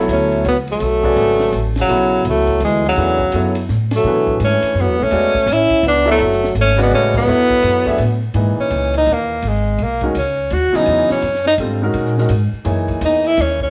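An intense, spiritual modal jazz waltz at 167 BPM in a swung 3/4 opens in B dorian with an up-front, clear tenor saxophone singing the melody with vibrato and subtone through plate reverb, shadowed in the background by a breathy, mellow trombone line that drops out at 8.2 s, while an intimate grand piano with audible action noise and long sustain comps over suspended chords, a woody pizzicato upright bass anchors the low end, and a compact cocktail kit adds dry, dark cymbals, a high-tuned snare and a punchy kick, the band hitting shared accents before the music shifts to G# minor at 8.3 s for a tenor saxophone solo in a moderate studio room.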